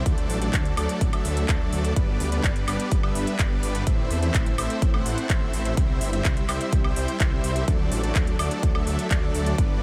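A huge, bright supersaw lead carries the riff up front, its detuned unison layers pumping under sidechain compression and trailing delay, in this anthemic, triumphant slice of festival progressive house cut from a longer piece. Beneath it, a thick, saturated sawtooth bass with a menacing beat to its tone also pumps with the sidechain, while a punchy, layered electronic kick drives the 4/4 groove alongside a tape-warm house kit of handclaps, metallic hi-hats and woodblock. The chords move from D to G, Am and C before returning to D at 7.7 seconds, set in light digital reverb.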